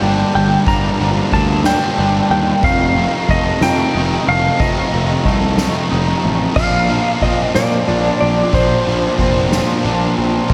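A dreamy, reverb-soaked mix in a lush hall opens this short, cinematic and melancholic post-rock excerpt, moving slowly at 61 BPM in a straight 6/8 over Gm7, F7 and Bbadd9. A dark, compressed clean lap steel carries the slide melody up front, bathed in lush chorus and diffuse ambient delay. Beneath it, a twangy, scooped electric guitar plays very quiet fingered arpeggios, while a bright, crunchy overdriven guitar sits in the background and a sludgy distorted guitar adds a warm riff. A round, punchy fuzz bass grounds the low end, and a soft-mallet drum kit with a boomy kick, medium-tuned snare and dark cymbals rumbles naturally at a distance. At 8.3 seconds a very quiet, evolving wavetable pad fades in with slow-attack, full-bodied sustained chords that morph gently.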